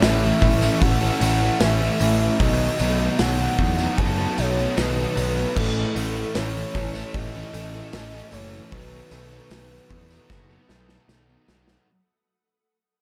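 A loose indie drum kit with a punchy kick, pumping small-room sound and tambourine jingle drives this dreamy, blissful shoegaze and dream pop excerpt at 76 BPM in B mixolydian from the first beat, together with an up-front fuzzed bass, a dark fuzz guitar riff in the background, an overdriven garage guitar riff washed in reverse reverb, and faint twangy clean guitar arpeggios. A pure, breathy sine lead with chorus, delay, vibrato and gliding portamento carries the melody over a very quiet, blurred granular cloud pad as the harmony moves between Amaj7 and B7. The whole passage fades out, and a drum fill arrives at 10.3 seconds.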